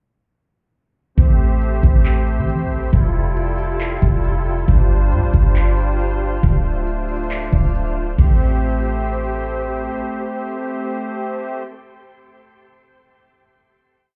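A sparse half-time trap beat of knocking kick, handclaps, crash and crisp, overdriven hi-hat rolls drives this melancholic, ethereal cloud-rap piece from 1.2 s to 8.3 s, over a deep, round 808 bass with long sliding sub notes and a reedy, shimmering musette accordion pad with sidechain pumping, while a faint, sparkling granular texture with built-in reverb drifts in at 1.8 s, the whole mix heard muffled as if through a club wall until the accordion and texture sustain a final chord to 11.6 s.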